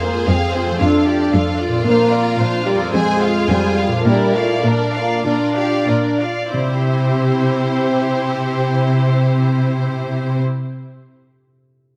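A soaring, heroic cinematic passage in C mixolydian opens with strings, horns and harp together. A focused, lush violin section carries the melody over a distant second violin line, smooth bowed violas and up-front, rich cellos anchoring the bass, while a mellow French horn section holds soft-attack chords and a bright concert harp rings out arpeggios in the background. Moving between 89 and 115 BPM in a straight 4/4, the tempo slows from 0.8 to 6.5 seconds as the harmony passes from Fm through Dm/F to Bbadd9 and Bb, and at 6.5 seconds the music arrives on C as very quiet, dry timpani enter, the orchestra set in a moderate scoring-stage reverb.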